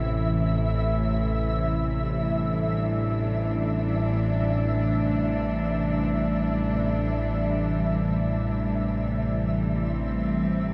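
Dark ambient drone in free time, unsettling and shadowy, cut from a longer piece and bathed in a huge, wet reverb with a long 7.2-second tail. An evolving, warbling analog drone with sawtooth and pulse-width character sits low and up front with chorus, while a close, intimate cello section bows soft sustained chords sul tasto with light vibrato over a Cadd9/A harmony. High above, a faint flickering, granular texture hovers on a single detuned tone, all three parts sounding together for the full 10.7 seconds.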